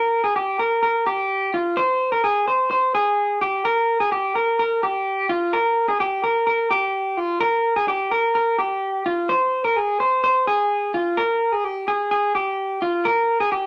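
A lone electric guitar through a small old amp opens this wistful, restless indie pop excerpt, its picked line sitting up front in a slightly broken-up, compressed tone and moving between F4 and C5 in a straight 4/4. The passage shifts to new material at 5.5 seconds and again at 9.3 seconds, running to 13.7 seconds as a cut from a longer piece. A moderate studio reverb gives the guitar a short, roomy tail.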